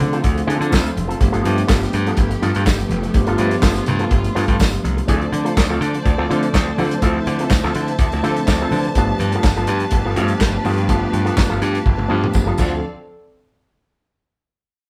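A band playing live in one room, with moderate studio reverb, lays down a danceable, sultry disco groove at 124 BPM in D dorian, taken from a longer piece. Up front, a warm soul drum kit with a tight kick, dark cymbals, handclaps and toms drives the straight 4/4 alongside a bright, picked electric bass. A bell-like tine electric piano and a twangy electric guitar through an envelope filter share the accompaniment over Dm7 and G9. Behind them, a rich studio string section holds sustained chords with vibrato. Very quiet congas with a thick, damped skin enter at 0.2 seconds, and a jingly tambourine joins at 0.7 seconds. The electric piano adds a fill at 8.0 seconds, and the drums play a fill near the close.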